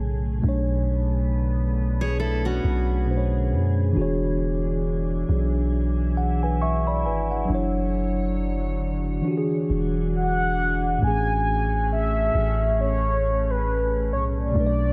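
Tender and smooth, this slow contemporary R&B excerpt, cut from a longer piece, rests on a mellow tine electric piano, a glassy FM pad with ensemble chorus and a deep, decaying 808-style bass through Bm9 to E13 changes, while a full-bodied picked steel-string acoustic guitar adds brief echoed arpeggios with finger squeak from 2.0 to 3.7 s and a round, horn-like synth lead with vibrato, phaser and tape echo carries the melody from 10.2 s onward, arriving on Amaj7 at 11.0 s.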